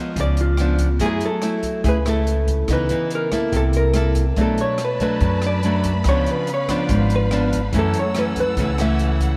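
Bossa nova at 142 BPM in 4/4 with a straight feel, this brief excerpt from a longer piece has a sophisticated, relaxed mood, its chords moving through C#7b9, F#m9, C#m9 and C6 before settling toward F#m7. A fingerpicked nylon-string guitar sits up front with a classical tone and audible finger squeak, carrying the accompaniment from the first moment. Over it, a vintage hollow-body jazz guitar plays the melody with a dark, clean, picked and compressed electric sound, touched by subtle chorus and delay. A woody pizzicato upright bass and an open jazz drum kit join at 0.2 seconds, the kit keeping to hi-hat, rim click and a boomy kick in a small-room sound. At 4.4 seconds a lush bowed symphonic string section enters with expressive vibrato, holding sustained chords high above, while a moderate, lush hall reverb gives the whole mix a dreamy, soaked quality.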